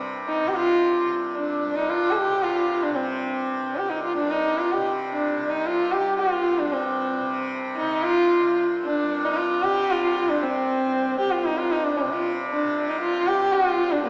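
A longing, meditative mood settles over this fragment of Hindustani classical music in 7/4, cut from a longer performance, with a gradual quickening of pace throughout. A softly plucked acoustic tanpura opens the drone at 0.0 seconds, its bright, buzzing tone shimmering low beneath everything. At 0.3 seconds a single bowed sarangi enters up front with a dark, smooth voice, gliding between notes with portamento and light vibrato while its sympathetic strings ring along. The sarangi's line stays even, carrying the melody above the tanpura's steady hum. A wet concert-hall reverb gives the recording a spacious, church-like ambience, though the overall sound has the character of a small speaker.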